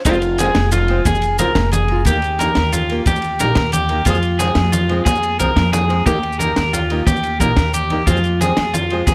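Warm and danceable, this short highlife guitar-band passage in a straight 12/8 moves between F minor and E-flat chords, cut from a longer piece. Up front, a twangy, slightly broken-up electric guitar picks arpeggios through an analog delay, while a boxy fingerpicked archtop guitar, finger squeaks audible, fills in the accompaniment over a woody pizzicato upright bass. A compact cocktail kit with a punchy kick, high-tuned snare and dark cymbals drives the groove alongside ringing, hard-hand congas and grainy maracas, with a drum fill at 7.6 seconds, all in light reverb.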